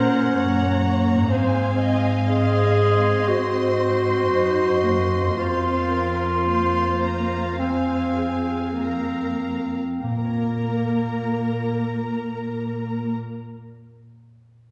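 A clear, up-front solo clarinet carries this sorrowful, moving orchestral film cue. It is played in a classical style, with a lush, distant violin section sharing the second line above it. Beneath them, bowed violas with vibrato and a smooth top fill out the accompaniment, and a close, soft-attack cello section holds the bass with a warm tone. A concert harp rings through arpeggios from the background. The slow rubato pulse keeps slowing through the first 10.0 seconds as the harmony moves from Gb through Ab to Fsus4, before settling on Bb minor. The strings and clarinet stop at 13.1 seconds, the harp rings on alone until 13.9, and a wet scoring-stage reverb places the ensemble further back in the room in this passage cut from a longer piece.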